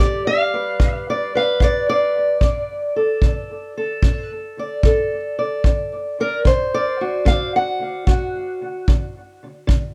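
A swung 74 BPM pulse in 4/4 drives this swaggering, rollicking acoustic country blues fragment, cut from a longer piece, where a dark, boxy parlour-style steel-string guitar fingerpicks the melody up front with a touch of analog delay, moving from G to D at 2.4 seconds, while a punchy, natural-sounding kick drum played with brushes joins at 0.8 seconds in a small, lightly reverberant room.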